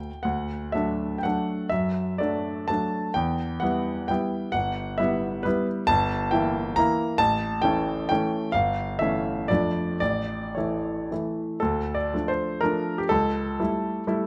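A clear, intimate grand piano opens this capricious, nostalgic romantic triple-time dance in 3/4, playing alone from 0.0 to 14.3 s with dotted rhythms and rubato between 106 and 146 BPM, moving from D major into D minor at 5.9 s, with audible action noise caught by close, detailed microphones and a moderate recital-hall reverb around it, and the short passage is cut from a longer piece.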